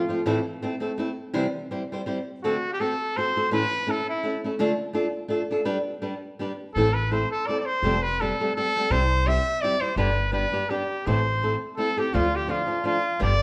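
Mexican folk in a mariachi vein, this romantic, festive fragment cut from a longer piece moves in a swung, rubato 3/4 at 168 BPM. A fingerpicked flamenco guitar with fresh strings and audible finger squeak carries the accompaniment up front from the start, while a clear, distant classical-style trumpet sings the solo melody in short phrases before settling in from 6.7 seconds. A woody, thumpy pizzicato upright bass with gut strings joins at 6.8 seconds over chords moving through Am, Fadd9, C and G, all bathed in the wet reverb of a recital hall.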